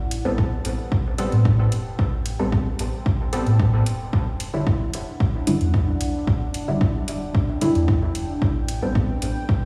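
Hypnotic and nocturnal, this dub techno excerpt moves at 112 BPM in A dorian, shifting between Am9 and Em9 under a light stone-room reverb that sounds like a big sound system playing in a bare space. An overdriven, up-front kick drum and metallic, overdriven hi-hats drive the beat, while a round, soft sub bass pumps with the sidechain beneath muted, detuned chord stabs that carry chorus, phaser and dub echo. A moody sawtooth pad with a slow attack and long release holds sustained chords through the whole 9.7 seconds, also sidechain-pumped and bathed in chorus and its own reverb.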